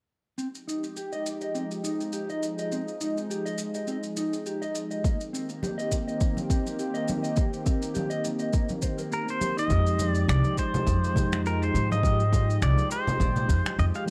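Sunset chillout at 103 BPM with a lightly swung 16th feel, relaxed and warm, moving from Fm9 to Cm7 and back in a short cut from a longer piece. A dark, fingered electric guitar plays filtered arpeggios with dub echo over a lush, detuned sawtooth pad with chorus, while shaker and finger snaps run through analog delay from 0.4 s; a punchy, up-front electronic kick arrives at 5.0 s, joined at 5.6 s by saturated congas in the background. A bright, fingerpicked slide melody on pedal steel enters at 9.1 s; at 9.7 s the guitar stops, and a woody pizzicato upright bass and a clean tine electric piano with a filter sweep and dub echo enter beneath it, all set in a moderate plate reverb within an echo-heavy mix.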